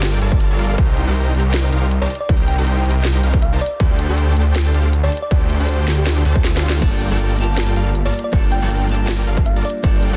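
A dense, heavily limited modern master in digital ambience carries this bittersweet, lush future bass excerpt in G minor at 159 BPM with a swung half-time feel, where a bell-like FM electric piano sparkles out the melody through chorus, tape echo and sidechain pumping over a huge, airy supersaw riff that also pumps, a thick, saturated detuned saw bass with chorus sitting up front, a distorted, layered electronic kick, and a trap kit of sharp snare, crisp hats and crash cymbal, as the harmony moves through Gm9, Cm7 and D7sus4 until a drum fill at 6.4 s leads into the return of Gm9 at 6.8 s, where a bright, twangy twelve-string electric guitar joins with dub echo and its own pumping.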